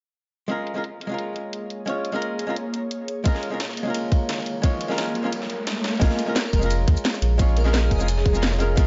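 Dreamy and lush, this short cut of liquid drum and bass opens on a dark, clean hollow-body archtop guitar with tape echo alongside a cracking, filtered garage kit. They are soon joined by an ethereal, detuned pad that pumps softly in the background. At 3.3 seconds a tight, up-front electronic kick and a gritty, pitched-up breakbeat kit enter, and a riser builds toward the drop as the kick briefly drops out. Then at 6.0 seconds the drop lands with a deep sine sub bass, followed shortly by a soft, airy lead carrying chorus, vibrato and portamento, all in an echo-heavy, mellow-topped mix.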